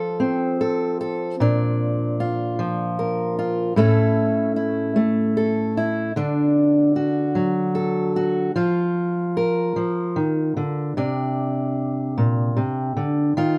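A slow 6/8 at 50 beats per minute, counted in dotted quarters, carries this melancholic, wistful folk piece, cut from a longer work. A lone fingerpicked steel-string acoustic guitar sits up front with a warm, concert tone, moving through F, Bb, A, D, Fsus4 and Csus2 across its 13.6 seconds. Close, detailed microphones and little reverb keep the sound intimate and dry.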